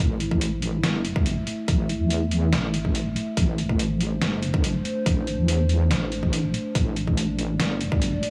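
A loud bed of digital vinyl crackle sits over this brooding, cavernous deep dubstep excerpt, which runs at 142 BPM in 4/4 with a half-time feel and holds on a single A minor chord throughout. Up front, a heavy, saturated wobble bass built from detuned sawtooth and sine tones growls low with a fast attack and a chorus sheen, mellow despite its weight. Alongside it, a dark analog pad of square, sawtooth and triangle waves with a sub octave sustains deep, moody chords through a slow attack and long release, colored by chorus and phaser. The drums arrive at 0.2 seconds as a gritty, pitched-down, sampler-style trip hop kit of hi-hat and medium-tuned snare with a compressed, tape-warm character. A punchy, layered electronic kick joins at 0.3 seconds, re-recorded in a large room to add to the cavernous depth.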